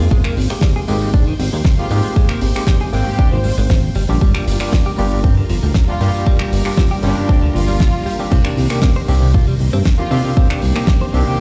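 A punchy electronic kick sits up front throughout this sleek, cosmic nu-disco clip, a tape-toned, layered thump at 117 BPM in a straight 4/4 and C minor. Beside it, a glossy, dark synth bass with chorus and a plucky filter carries the low end. Behind them, a damped 70s drum kit adds a fat snare, hi-hat, finger snaps and dusky crash cymbals, all dry and airy. A barky, lightly overdriven tine electric piano with fast tremolo, gritty 12-bit sampler texture, digital delay and sidechain pumping plays the accompaniment, while a lush vintage string machine holds slow-blooming chords in the background with ensemble chorus and its own pumping. A bright, clean, direct-recorded electric guitar picks a compressed riff with subtle chorus, and a smooth, bowed symphonic violin section sings the melody with vibrato and delay over chords moving from Abmaj7 to Gm7 at 4.0 seconds and Cm7 at 8.3 seconds. The whole clip sounds as if played on a big sound system in a bare room, bathed in large studio reverb.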